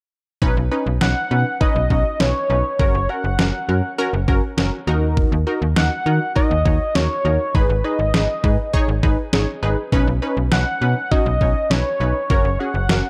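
Upbeat yet wistful, this synth-pop excerpt opens at 0.4 seconds with a thumpy, sampler-style 8-bit drum machine and a snappy FM bass with a metallic attack, both up front, beneath a punchy, funky polysynth comp built from detuned sawtooth and square waves with a filter pluck and chorus. At 1.0 seconds a bold, retro octave-doubled lead enters up front, its sawtooth and triangle tones carrying vibrato, chorus and tape echo over a cycle from Badd9 through F#, D#m and G#m. Light reverb and a dark production round out the sound.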